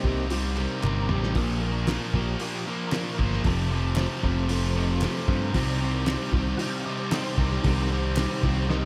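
Classic rock with a brooding, driving mood, this short excerpt moves at 115 BPM in a straight 4/4 in C dorian, cycling through Cm, Bb and F before returning to Cm at 5.5 seconds. Two overdriven guitars each carry a riff, one crunchy and picked, the other a bright semi-hollow with a hollow-body edge, while a punchy, up-front electric bass anchors the low end with a direct, bright tone. The cloth-damped drum kit sounds thuddy and muffled, with a fat snare, tight kick and a gritty, saturated, lo-fi character, marking a fill between 0.8 and 1.4 seconds and another at 8.7. Behind them a mellow tonewheel organ holds round, dark sustained chords through a slow rotary speaker with light overdrive, chorus vibrato and audible key click, and a detuned, jangly honky-tonk upright piano adds woody, boxy accompaniment at a very quiet level. Crisp group handclaps sit in the background from 0.6 to 8.3 seconds, and the whole band is placed in a small room with light reverb.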